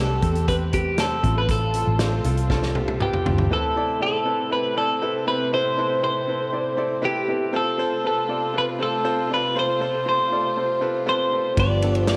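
A twelve-string electric guitar carries the melody from the opening moment, bright and twangy with a slapback echo, over a clear grand piano whose action noise gives it an intimate, present feel and a lush bed of bowed studio strings. This is bittersweet, driving piano-driven pop in A minor at 119 BPM in a straight 4/4, cut from a longer piece. A round, foam-muted electric bass and a natural country drum kit with a punchy kick and medium-tuned snare drive the first 3.5 seconds, closing with a drum fill from 2.5 seconds. The bass and drums then drop out, leaving guitar, piano and strings to move through Amadd9 and F, until both return at 11.6 seconds as the chords land on G. At that point a dark French horn section adds a tight second line in the background, and the whole mix sits in a moderate echo chamber reverb.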